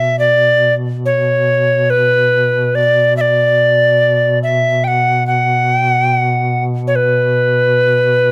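Close, detailed microphones and a light reverb place both instruments up front in this short, mournful Caucasian folk lament, cut from a longer piece and flowing in a free, rubato feel. An airy alto recorder carries the melody between B4 and G5 throughout, its woody tone marked by a crisp, chiffy attack and vibrato. Beneath it, a dark duduk holds a steady drone on B2, with soft attacks, scooped notes and a smooth, trembling top that deepens the sense of longing.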